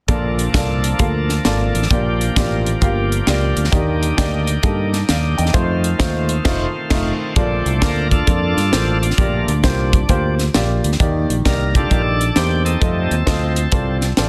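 A swung eighth-note groove in four drives this uptempo gospel excerpt, its mood both reverent and jubilant. A crisp fusion drum kit sits up front, with a high-tuned snare, punchy kick, hi-hat and crash cymbal ringing through an airy studio room. A fingered electric bass carries the low end with a warm, direct and amped tone, while a clear upright piano supplies woody, vintage accompaniment with long sustain. A bright tonewheel organ holds full, lightly overdriven chords through a slow rotary speaker. The band hits an accent at 6.5 s, and at 7.4 s the organ moves into a shouting solo over the same chord cycle. The sound has light reverb and a small-room ambience, finished with a dense, heavily limited modern master that shows some lossy compression artefacts.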